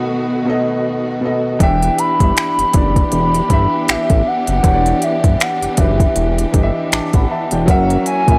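Moody and longing, this excerpt of contemporary R&B sits at 79 BPM in E minor, with a swung sixteenth-note feel in 4/4. A concert grand piano with audible action noise and deep bass opens alongside a distant, lush string section bowing sustained chords, moving from B7 to Em7 at 1.6 seconds. At that point a hollow, woody synth lead with a clarinet-like tone, chorus and vibrato takes the melody, while a fat, detuned analog sawtooth bass enters down low. The electronic drum kit arrives at the same moment, up front with a soft kick, crisp hi-hat and finger snaps, roughened by overdrive. A turn to F#7 at 7.7 seconds closes the passage, and the whole is captured as a dry, gritty hardware recording with a digital ambience.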